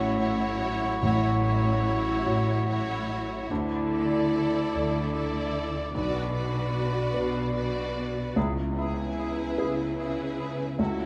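A moderate scoring-stage reverb wraps this tender, hopeful cinematic film-score fragment for orchestra, moving in a rubato 6/8 at 49 BPM over A6, Dsus2, Bm and C#m7, where a dark, woody violin section carries the melody while a rich second violin section, an airy, hollow concert flute, a distant cor anglais and a clear, roomy clarinet weave second lines above a felt-muted upright piano with audible action noise, a viola section sliding in portamento, a mellow French horn section holding sustained chords, cellos and a smooth, even double bass section anchoring the low end, and timpani struck with medium mallets barely audible between 1.0 and 2.2 seconds.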